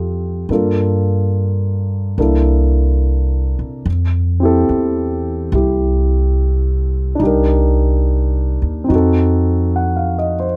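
Late-night and romantic, this jazz ballad excerpt moves at an unhurried 71 BPM in F major with a swung feel, carried by just a dark grand piano and an upright bass throughout its 10.6 seconds. The mellow, intimate piano sits up front with audible action noise and a vintage smoothness, voicing rich chords such as Gm9, C13 and Fmaj9 before turning through Cm7 to F7b9. Beneath it, the woody, plucked steel-string bass holds the low end up close, and the dry, closely miked sound keeps every detail near.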